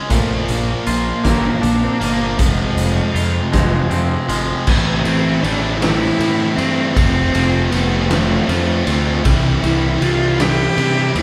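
A twangy, compressed electric guitar picks arpeggios alongside a bright, overdriven guitar riff in this brooding, cathartic quiet-loud alternative rock excerpt in a straight 6/8, with the clean arpeggios dropping out at 4.7 s as the chords move from Bb and Fm to Am, F and C. A focused, bowed cello carries the melody with vibrato over a thick fuzz guitar riff sitting in the background and a growly fuzz bass. An up-front, gritty garage drum kit with a punchy kick and a rolled-off top drives the band, captured playing live together in one room with moderate reverb.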